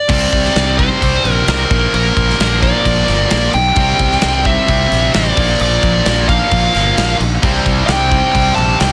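A dark, smooth overdriven lead guitar sings up front with digital delay from the first moment of this heavy, aggressive hard rock excerpt at 131 BPM, as bright overdriven and high-gain distorted rhythm guitars pick a riff in the background over a growly, fuzzed fingered bass and a big acoustic drum kit with a tight kick, a medium-tuned snare and crashes, all moving between C5, Bb and C chords in a small, lightly reverberant room until a double-tracked overdriven guitar joins with a higher riff at 7.4 seconds.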